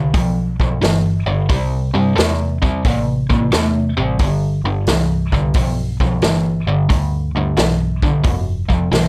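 Blues rock in a power trio and southern rock vein, this driving, gritty cut from a longer piece swings its eighth notes at 89 BPM in G mixolydian, moving from G to C at 1.5 seconds and back to G at 4.2 seconds. A bright, overdriven, double-tracked electric guitar riff sits up front beside a vintage drum kit of hi-hat, punchy kick and medium-tuned snare heard in a small, natural room, which comes in at 0.1 seconds. Beneath them, a dark, round, foam-muted picked bass holds the low end, all in a dry mix with little reverb.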